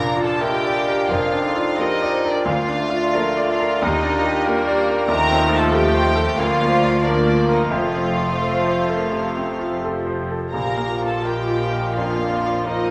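Moving in a rubato 4/4 at 81-96 BPM, this passionate, lush romantic passage for piano and orchestra in Bb major is cut from a longer piece, with a brilliant, up-front grand piano with long sustain and audible action noise carrying the melody alongside a distant, floating violin section. Beneath them, a mellow clarinet, close-miked cor anglais, hollow flute group and a second, softer violin line weave supporting parts, while a clear bassoon and a viola section entering at 0.4 s fill in the accompaniment over a dark, woody double bass section and a smooth cello section. A roomy French horn section holds sustained chords from 1.1 s, soft-mallet timpani add a round Bb at 10.5 s, and the whole is set in a recital-hall reverb as the harmony moves from Bb through Ebmaj7 and F7/Eb before settling back on Bb.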